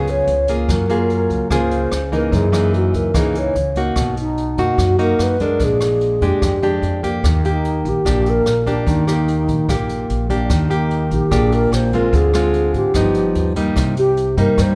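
Bossa nova with a relaxed, sophisticated mood, where an airy, hollow alto flute with vibrato sings from a distance over an up-front, fingerpicked nylon-string guitar, a woody, thumpy pizzicato upright bass and a brushed drum kit of hi-hat, boomy kick and rim click, all in a light reverb as the jazz harmony moves from Db7 to Cm7 at 13.8 seconds.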